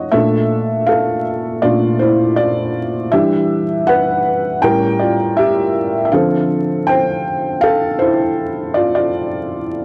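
Nostalgic and reflective, this short cut from a longer hip hop piece rests on a single felt-muted upright piano playing solo for its full 9.8 seconds. The tempo sits at a relaxed 80 BPM in 4/4, with a gentle 16th-note swing that lends the D minor passage an unhurried, lilting feel. The piano sounds soft, mellow and intimate, placed up front with audible action noise and a cassette tape coloring that adds to its homemade charm. Its harmony moves from Bbmaj7 through Em7 and A7b9 before settling on Dm9 at 6.1 seconds, spanning a range from A2 to G5. Light studio reverb and a layer of vinyl crackle frame the performance, giving the whole home recording a dusty, lived-in character.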